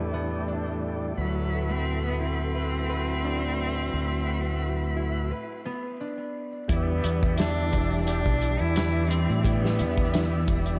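A round, up-front fingered dub bass anchors this dark, melancholic trip hop piece in E minor at 87 BPM, beneath a slow-rotary tonewheel organ with tape echo and sampler grit, filter-swept string-machine cellos in the background, a ringing fingerpicked harp, and a rich, bowed solo cello melody with vibrato entering at 1.2 seconds; after a break at 5.3 seconds, a warm soul drum kit with a tight kick and a rolled-off top arrives at 6.7 seconds alongside tambourine and triangle, all set in a dreamy, reverb-soaked mix with vinyl crackle.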